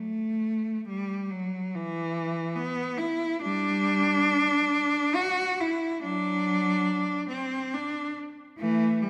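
Serene and lyrical, this short classical excerpt presents a single cello playing alone in an expressive, free style. It moves at about 70 BPM in 3/4 with a rubato feel, set in E minor and tuned to A4 = 443 Hz. The bowed cello sits up front with a rich, focused tone, a smooth top and vibrato, ranging from E3 to F#4 across its 9.1 seconds. A moderate concert hall reverb with a 2.0 second decay surrounds the instrument, lending the performance a sense of space. Cut from a longer piece, the passage captures one player's songlike phrasing.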